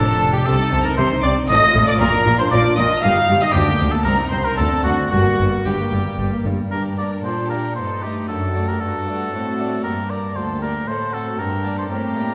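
A stormy, driving baroque-style concerto movement in G minor at 116 BPM in 3/4 opens with a close-miked oboe carrying the melody up front, alongside a high violin section of gut-string tone, while a second violin line moves beneath them and a nasal, dark viola section and a full Italian-style harpsichord with two sets of strings fill in the accompaniment. Reedy, period-style cellos and double basses anchor the bass until the double basses stop at 6.5 seconds, as the harmony moves from C minor through D7 to G minor. A wet recital hall reverb, heard from further back in the room, surrounds this passage cut from a longer piece.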